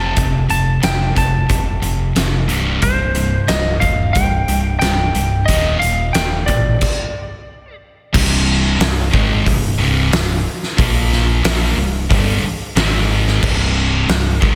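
A driving, aggressive hard rock cut with a light reverb sets a huge arena drum kit up front, its fat snare and punchy kick ringing in a big room alongside crash cymbal and hi-hat from 0.2 seconds. Two rhythm guitars sit in the background, each playing a low riff: one bright and high-gain with heavy distortion, the other sludgy and warm with overdrive, both picked. Beneath them an overdriven fingered electric bass drives the low end with a bright, amped, punchy tone. Up front, a dark, slightly broken-up lead guitar carries the melody, its compressed picked lines coloured by slapback echo and analog delay until 7.8 seconds. The band hits a stop at 6.8 seconds, then crashes back in at 8.1 seconds for a second section that pushes the driving riff around C minor through to the end of this fragment of a longer piece.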